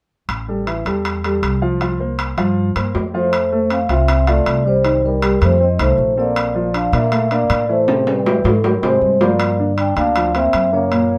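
A straight 4/4 Afro-Cuban jazz groove drives this lively, sophisticated excerpt, with woody, thumpy pizzicato upright bass up front, ringing metal-shell timbales and a natural-sounding baby grand piano accompanying from the start. Around 3.1 seconds a smooth trombone second line with light vibrato enters, and a moment later a mellow vibraphone played with soft mallets, its motor off, takes the melody. A drum fill arrives at 7.9 seconds as the harmony moves through rich extended chords. A small room lends the sound a moderate, short reverb.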